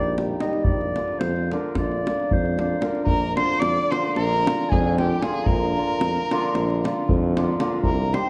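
Exuberant and festive, this short cut from a longer Balkan wedding-band piece in Bb mixolydian drives along at 226 beats per minute in a straight 9/8. A dark, distant clarinet carries the melody from the start, sounding through a roomy recital-hall reverb in a classical style. Beneath it a shimmering hammered dulcimer sits up front with ringing accompaniment, while a warm, solo tuba anchors the bass from afar and a deep davul stays close and dry. At 3.1 seconds, as the music moves into a new section, a single bowed violin enters with a focused second line, its vibrato and smooth top adding a warm glow. The harmony shifts from Eb to Bb early on, and the overall production leans dark and warm.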